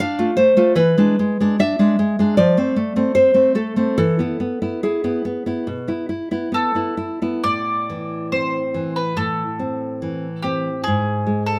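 A melancholic, elegiac romantic duo in A minor, played with rubato at 65-80 BPM in 4/4, opens on a deep, fingerpicked nylon-string guitar accompaniment moving through Dm, E7 and E before a bowl-back mandolin enters at 6.5 seconds with a picked, double-string melody, the pair resolving to Am at 7.4 seconds, both up front under light reverb in this section cut from a longer piece.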